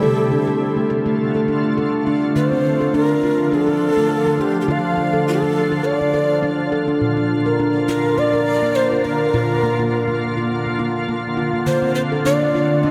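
A hypnotic, meditative world piece opens with a ringing, stainless-steel handpan playing arpeggios up front, a close-miked cedar flute carrying the melody with a breathy chiff, unsteady vibrato and delay, and an ethereal pad holding sustained chords with an octave-up, granular shimmer and detuned chorus. The lightly swung groove rests on a Dm chord, shifting to Bb at 7.0 seconds and back to Dm at 11.7 seconds. The whole performance sits in a vast, echoing cathedral reverb, and this brief portion of a longer piece runs all three parts together to 12.9 seconds.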